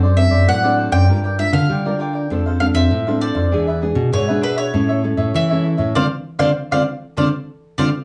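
Yearning and nostalgic, this 99 BPM samba in D minor sets a woody, double-strung picked mandolin melody up front over crisp cavaquinho chords, a full-bodied, fingerpicked classical nylon-string guitar accompaniment with audible finger squeak, also up front, and a fingerpicked classical nylon-string bass line, moving from D7/F# through Gm7 and E7 to a band accent on Dm7 at 6.0 seconds, all set back in a small, reverberant room.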